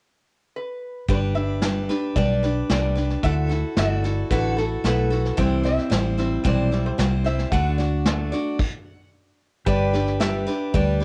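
A metallic, nasal lap resonator guitar, played with slide and fingerpicks and tinged by cassette tape, opens this heartfelt, down-home honky-tonk and classic country excerpt alone at 0.6 seconds, carrying the melody. At 1.1 seconds the band arrives: a bright, picked steel-string acoustic guitar sits up front with audible finger squeak, picking through G, Dadd9, C and D. A dark, foam-muted fingered electric bass adds a round, punchy low end, and a vintage brush drum kit with dark cymbals, a tight kick and a rolled-off top shares the resonator's cassette-tape character. After a brief stop in the band, a clean, compressed pedal steel guitar joins at 9.7 seconds with slide and volume swells, laying sustained chords as the harmony returns to G. Light reverb and the home-cassette recording give the whole a homespun, intimate feel in a straight 4/4.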